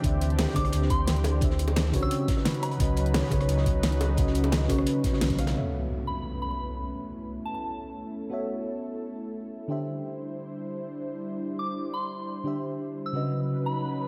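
Lush and rolling, this liquid drum and bass cut opens with a round FM electric piano (treated with chorus, phaser and analog delay) and a thick, detuned unison pad (with 12-bit grit and sidechain pumping), both floating in a dreamy hall reverb, while a deep sub bass, a thumpy electronic kick, a fat-snared pop kit, a dark breakbeat kit in the background and tight, high-tuned bongos drive a drop that falls away by 5.6 s. An electronic impact then lands and a filter sweep moves across the pad, while a soft, pure FM bell melody, first heard at 0.6 s, drifts in and out above.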